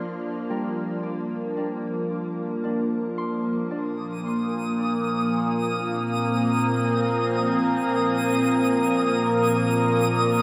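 An evolving, detuned wavetable pad sits up front holding sustained chords that move from Bbmaj7 to Fsus4/Bb, while a mellow, thumb-plucked Celtic harp fades in with ringing arpeggios in the background until 6.9 seconds and a twinkling granular texture with an octave-up shimmer enters at 4.0 seconds, all steeped in a huge, wet ambient reverb that gives this peaceful, weightless 3/4 fragment of a longer piece its floating air.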